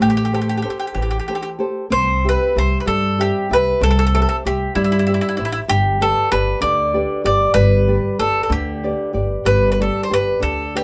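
A picked bowl-back mandolin with double strings sits up front and carries the melody in this wistful, romantic Italian serenade, a short cut from a longer piece in a straight 6/8 at 63 BPM. A warm, fingerpicked flamenco guitar supplies the accompaniment, while a woody, dark pizzicato upright bass, also up front, anchors the low end as the harmony moves from Am7 to G at 5.7 seconds. The trio plays live together in a small room with a moderate reverb, and after a brief opening phrase a new section begins at 1.9 seconds.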